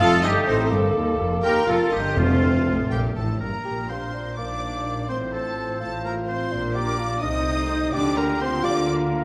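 In a lilting 6/8 at 84 beats per minute, this brief, lively and graceful classical-period orchestral passage in Bb major has the violin section carrying the melody with rich, focused vibrato, while the clear oboe, a pure, very quiet flute and a second, lush violin line weave supporting parts above a smooth viola section in the background. A mellow bassoon, a tight French horn section holding sustained chords and punchy trumpet stabs fill out the middle, and lush cello and double bass sections anchor the bass, with crisp hard-mallet timpani strokes sounding only from 2.2 to 2.9 seconds. The dark production sits in a recital hall's reverberant glow as the harmony shifts from the opening section into a second one at 3.7 seconds.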